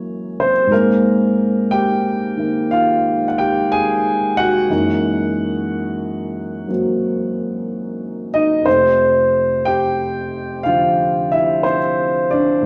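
Late-night and cool, this brief excerpt of solo jazz features a dark baby grand piano carrying everything from 0.0 to 12.7 seconds, its swung eighths unhurried and its harmony drifting from F#9 through Abmaj9 and F#13 before settling on Fmaj7. The piano sits up front with a mellow, intimate tone, long sustain and audible action noise that keeps the sound natural and close. A wet stone-room reverb with a 1.2-second tail surrounds the instrument, giving the live-in-the-room performance a shadowy depth.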